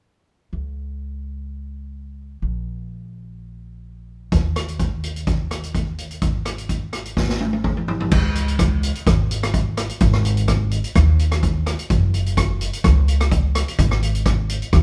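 A straight four-beat calypso groove carries this carefree, bouncy fragment, opening with a woody, thumpy pizzicato upright bass on its own before an up-front street-band drum kit with a boomy kick, medium-tuned snare, rim clicks, toms and dark hi-hat and crash joins at 4.3 seconds, then throws in a fill at 7.2 seconds to lead into the next section, all captured as a band playing live in one room with light reverb.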